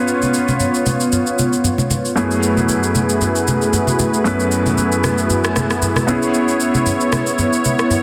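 A swung groove at 115 BPM in 4/4 sets a late-night, hypnotic amapiano mood in this eight-second cut from a longer piece. An electronic shaker and rim click enter at 0.1 seconds, with congas joining at 0.2 seconds, their thin, damped skins tuned low and struck with hard hands in a small-room sound. A grand piano sits up front as accompaniment, intimate and natural with deep bass and audible action noise, moving from C#7 to F#m11 and on to C#m7. Alongside it, a smooth analog pad of detuned sawtooth tones holds sustained chords with a soft attack, long release and chorus, giving a warm glow. A lush hall reverb surrounds the mix, and the master is dense and heavily limited in a modern style.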